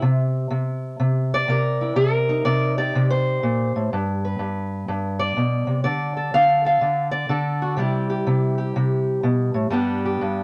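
Acoustic country blues with a soulful, gritty mood, carried by a lone fingerpicked steel-string parlour guitar that sits up front with a dark, boxy tone across a range from G2 to F5. The swung eighth-note feel moves through a C, Cm7, G, D5, C and G progression in a slightly flat tuning. Light reverb and a warm, shadowy production frame this short excerpt, which runs to 10.4 seconds as part of a longer piece.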